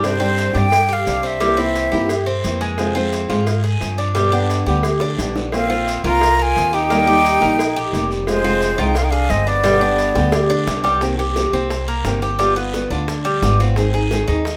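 A danceable, nostalgic slice of Cuban son and guajira opens at a brisk 175 BPM in straight 4/4, with a breathy, expressive jazz flute singing the melody over a full band from the first beat. Beneath it, a dark, fingerpicked nylon-string guitar accompanies while a metallic, double-strung Cuban tres picks arpeggios, and a woody, thumpy pizzicato upright bass sits up front. Tight, high-tuned cowbell and bongos, a raspy guiro and grainy, distant maracas keep the groove in the background. The flute drops out briefly and returns at about 5.6 seconds, just after a vibrato-rich trumpet enters at 5.5 seconds carrying a second line until 10.7 seconds, with drum fills marking the turns. The harmony moves through minor and suspended colours before settling on Cm7, G7 and Ab in the closing bars, all held in a moderate studio reverb.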